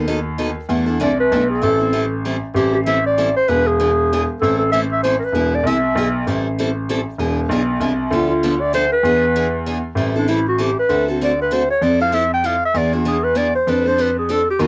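This is a fiery, virtuosic stretch of acoustic string swing in the jazz manouche style, cut from a longer piece and moving briskly at 194 BPM in 3/4 with a swung eighth-note feel, set in A harmonic minor before settling into A minor. A picked steel-string parlour guitar carries the accompaniment with a bright, boxy tone, fresh strings and audible finger squeaks. A baby grand piano holds down the bass line in its low register, sounding clear and open yet slightly worn, with long sustain and an up-front presence. The breathy clarinet enters at 1.0 seconds with the melody, playing in a mellow jazz style with vibrato, subtone, soft attacks and scooped notes, close-miked and up front. At 10.0 seconds it takes a solo as the harmony moves through Am7, D7, Fmaj7 and E7 before ending on F6. Both guitar and clarinet carry a cassette tape coloring, and the whole home recording on cassette sits in light reverb.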